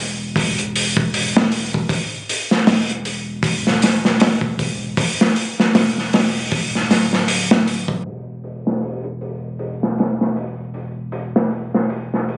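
Trip hop at 78 BPM in 4/4, with a 57% swing on the sixteenths giving the groove a lazy, smoky lilt and a brooding mood throughout this short cut from a longer piece. A soft dub sub bass opens at 0.0 seconds, deep and round with a fast attack and sustained notes sitting low between D1 and E1, its tone blending triangle and square waves. The crunchy breakbeat drum kit enters at 0.4 seconds and sits up front, an acoustic kit in a small room with a tight kick, a medium-tuned snare and hi-hat, sounding saturated and gritty with a dark, rolled-off top, each piece and the room run through high-pass filters. At 8.0 seconds the music moves into a new section marked by a filter sweep that runs to the end at 12.4 seconds. The whole recording carries light club reverb, vinyl crackle and compression, with a low-pass filter cutting everything above 10.3 kHz, and it sounds as though captured on a phone in the room.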